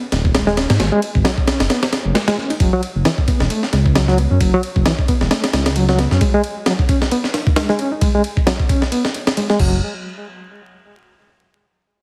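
Funky and swaggering, this breakbeat excerpt struts at 133 BPM with a light swing, as a gritty, thumpy sampler-style drum kit of kick, snare, ride and crash sits up front, a deep, rumbling detuned saw bass growls beneath until 6.2 seconds, and a reedy electric piano riff with fast tremolo, 12-bit sampler grit and tape echo rides a filter sweep from 2.6 seconds, all under a heavily compressed radio-like sound with vinyl crackle.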